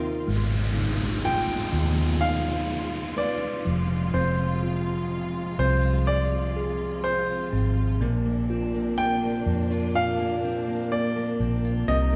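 Heartfelt and hopeful, this slow 62 BPM pop ballad fragment rests on a round, punchy, foam-muted electric bass up front, a bell-like tine electric piano and a veiled, con sordino string section holding distant sustained chords over Abm6, Fm and Bbadd9, while an electronic downlifter runs beneath until the fingerpicked dreadnought acoustic guitar's full-bodied arpeggios return at 8.0 seconds, and a clear, polished baby grand piano carries the melody from 1.2 seconds, all set in a moderate concert-hall reverb.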